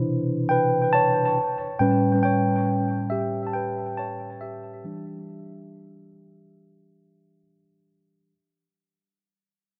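A mellow tine electric piano plays alone from the very first moment, carrying this short, moody R&B fragment cut from a longer piece. Its clean, up-front tone sits directly in front of the listener, colored by tape echo and set in a moderate plate reverb that gives the echo-heavy mix a longing, late-night air. The slow 4/4 groove has a light swing on the sixteenths, lending the accompaniment an unhurried, relaxed lilt. The harmony drifts from Cmaj7 to A7 and settles on Em7 at 4.8 seconds, with the piano spanning a broad register from its low bass notes to high upper tones. The whole passage fades out across its 8.3 seconds, leaving the echoing chords hanging.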